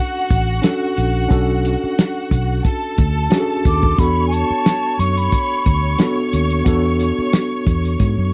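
A dry, close 1970s-style studio sound with little reverb frames this short, bittersweet slice of lush soul, moving smoothly at 90 BPM in 4/4 with a light 16th-note swing in B minor. A breathy, hollow jazz flute carries the melody with a soft attack and lifted highs, then drops out at 6.2 seconds. Behind it, a bright studio violin section plays a biting, intense second line with vibrato, set distant in the mix. A worn, slightly out-of-tune tine electric piano, mellow and clean through a combo amp with medium tremolo, supplies the accompaniment over Bm7 moving to E9sus4. From 0.3 seconds, a dark, round, foam-muted fingered electric bass and a muffled, lo-fi soul drum kit with tight kick, medium-tuned snare and hi-hat sit up front.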